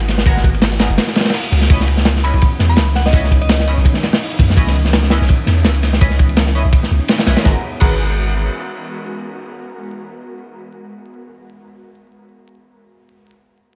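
Dark and atmospheric, this drum and bass and jungle excerpt runs at 167 BPM in G# minor, with a 55% swing on the sixteenths and a drop that spans from the opening until 7.4 seconds. A crunchy, saturated acoustic breakbeat kit sits up front with a tight kick, medium-tuned snare, dark cymbals and a rolled-off top, while a compressed, sampler-style kit of hi-hat, high-tuned snare and tambourine lies in the background under high-pass filtering. A deep, mellow 808-style sine bass with tube saturation anchors the low end until 8.5 seconds, as an ethereal, warbling pad of detuned sawtooth and triangle voices holds chords through ensemble chorus and its own reverb. A nasal, band-passed sawtooth stab with ring modulation cuts through with phaser, lush chorus and dub echo, and a glassy FM bell with 12-bit sampler grit briefly carries the melody between 2.2 and 3.7 seconds. The harmony moves from G#m9 to C#m9 and back to G#m9, all set in studio reverb with a bed of vinyl crackle.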